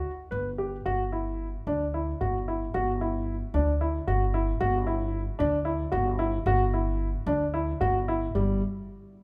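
A baby grand piano opens at 0.0 s with arpeggios over a Gmaj7 chord, its tone warm and worn, with long sustain and a close, up-front presence. An upright bass joins at 0.3 s, plucked pizzicato on steel strings, sounding woody, dark and growly in its low register. This is contemporary chamber music in an uneven 7/8 metre at 224 BPM counted in eighths, with a straight feel and a restless yet hopeful mood. The harmony settles onto a G5 chord soon after the start and stays there until the chord drops away at 8.3 s, with the instruments tuned to A4 = 439 Hz. A moderate scoring-stage reverb with an RT60 of 1.9 s gives the duo a sense of space, and the passage is cut from a longer piece.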